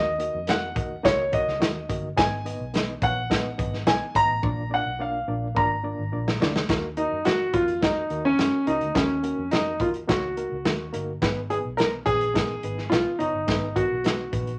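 A warm concert grand piano leads this urgent, passionate slice of uptempo 1960s-style soul, carrying the melody up front with a deep low end and short sustain, ranging from Db4 to Bb5. Set in Eb minor at 106 BPM in a straight 4/4, it moves through Ebm, Abm and Bb before returning to Ebm. A crunchy breakbeat drum kit comes in at 0.2 seconds, its hi-hat, tight kick and medium-tuned snare sounding saturated and gritty with a rolled-off top, and a drum fill runs from 4.4 to 6.7 seconds as the passage moves into its second section. Beneath, a reedy, barky electric piano supplies accompaniment through its built-in speakers, lightly overdriven and pulsing with fast tremolo. A vintage muted fingered electric bass, dark, round and foam-muted, anchors the low end, all within a moderate small room ambience cut from a longer piece.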